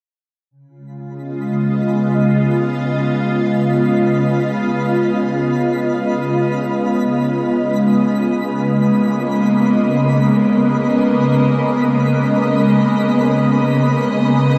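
Free-floating and unmetered, this serene ambient passage, cut from a longer piece, drifts in on a fade-in that runs from 0.5 seconds to its close. An evolving wavetable pad enters up front at 0.9 seconds, holding sustained chords that morph slowly through detuned unison layers of sine and triangle tones, tinged by ring modulation and coloured with ensemble chorus, phaser and its own reverb. Just after, at 1.4 seconds, a twinkling granular texture appears in the background, a sparkling FM layer with an octave-up shimmer and built-in reverb, rising gently on its slow attack and lingering on a long release. The harmony rests on Db7 before moving to Abmadd9/Db at 7.3 seconds. A drenched shimmer reverb with a long 9.3-second tail surrounds the whole sound, and the dark, warm production keeps the mood calm and enveloping.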